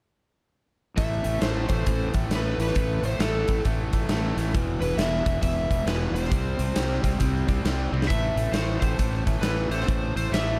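Set in a small room with light reverb, this brooding, heavy blues rock and southern rock fragment swings in 4/4, with a warm, overdriven slide guitar played with fingerpicks carrying the melody over a double-tracked, overdriven hollow-body guitar riff, a growly, up-front fuzz bass, and a big acoustic drum kit with a punchy kick and a bright stone-room sound that adds a fill at 7.9 seconds, as the chords move from Am to E5 and C5 and back to Am.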